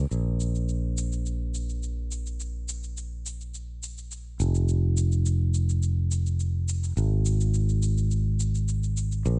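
Sunset chillout at 105 BPM in a straight 4/4, carrying a warm, wistful mood in this short cut from a longer piece. A fingered electric bass sits up front from the start, its bright, growly tone kept direct and low between F1 and Bb1, while an electronic, tape-warm shaker joins at 0.1 seconds and stays quietly behind it to the end at 9.4 seconds. The sound is dry and close, with little reverb and a top end that rolls off above 10.8 kHz.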